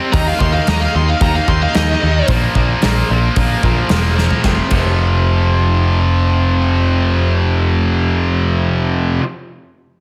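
This is an aggressive, menacing hard rock excerpt at 111 BPM in a straight 4/4, cut from a longer piece and running about nine seconds. A double-tracked, high-gain rhythm guitar sits up front with a bright, distorted riff throughout, while a punchy picked electric bass with a direct, bright tone holds down the low end from 0.1 s to the close. Above them, a high-gain lead guitar with a warm, distorted voice and slapback echo plays a short solo melody in its upper register, lasting only until 2.3 s. A gated 80s drum kit in a bright stone room, airy and polished, drives the opening with a punchy kick, medium-tuned snare, hi-hat, toms and bright cymbals, landing a fill at 4.2 s before dropping out at 4.9 s. The sound is heavily compressed and radio-ready, with light reverb and studio ambience, and the second section begins at 4.4 s, with just the riff and bass carrying on once the drums fall away.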